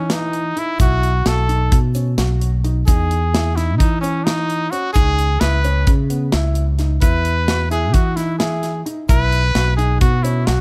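A clear, forceful trumpet leads this brooding, driving progressive band piece, playing a jazz-style solo melody up front with a light vibrato and a punchy, present tone. Set in an uneven 9/8 metre with a straight feel, the excerpt moves through chords such as Emaj7, B7sus4 and C#m9 before settling on Bsus4. Beneath the horn, a dark, mellow baby grand piano plays arpeggios with a touch of delay, its intimate, natural sound carrying audible action noise and short sustain. A fingered electric bass sits direct and up front, while an acoustic studio drum kit with a punchy kick, medium-tuned snare and hi-hat drives the groove from 0.1 seconds. A grainy, bright egg shaker, very quiet in a live room, joins at 0.8 seconds, and the overall mix stays dry with little reverb.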